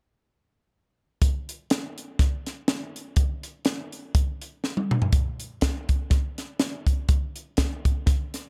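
A crisp fusion drum kit enters at 1.2 seconds, setting a jubilant, hopeful gospel groove at 123 BPM in 4/4 with lightly swung eighth notes. The acoustic kit sits up front, its punchy kick and high-tuned snare framed by hi-hat and toms in an airy, polished studio-room sound. A drum fill from 4.6 to 5.1 seconds marks the move into a new section, where the kit carries on until about 8.4 seconds. The recording itself is dry and gritty, with a hardware character that gives the kit an immediate, close presence. Cut from a longer piece, this brief passage feels like an uplifting rhythmic foundation waiting for the rest of the band.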